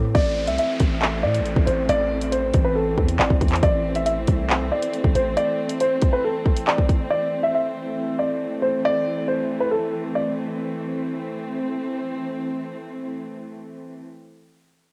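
A half-time drill groove at 138 BPM in A minor sets a cold, ominous tone, with a produced electronic kit of hard-clipped kick, hi-hat and handclaps sitting up front until 7.0 seconds, under a deep, sine-toned 808-style bass that hits with a fast attack and decays, stopping at 5.4 seconds. A dark, mellow baby grand piano carries the melody up front through a cassette-tape coloring, while an intimate chamber string section holds bowed sul tasto chords with light vibrato and soft attack through 14.0 seconds, also tinged by tape. An electronic downlifter drifts faintly beneath the opening seconds of this fragment of a longer piece, all set in a digital ambience with a home-cassette character.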